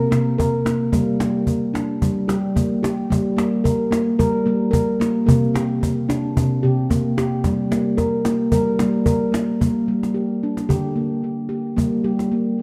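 A ringing nitrided-steel handpan, played up front with the fingertips and touched with delay, spins meditative G minor arpeggios between C5 and Gm chords at 110 BPM with a light sixteenth-note swing, while a snappy acoustic cajon with snares, struck with soft hands, keeps a close, hypnotic pulse in this dark world-music fragment, slightly flat of standard pitch at A4 = 437 Hz and set in a boxy small room with a lush echo-chamber reverb, shifting to a new section at 9.6 seconds.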